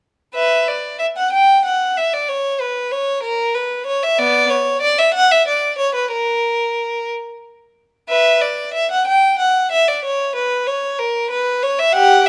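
A light reverb frames this short, intimate recording, with a single violin placed up front. It is a classical, baroque-style suite movement for unaccompanied violin in B minor, moving in a flowing 6/8 at about 62 dotted-quarter beats per minute with a rubato feel. The violin plays alone from 0.3 to 12.3 seconds, its bowed tone rich, smooth and even, colored by vibrato as it ranges from B3 to G5. The mood is introspective and flowing, and this brief passage is cut from a longer piece.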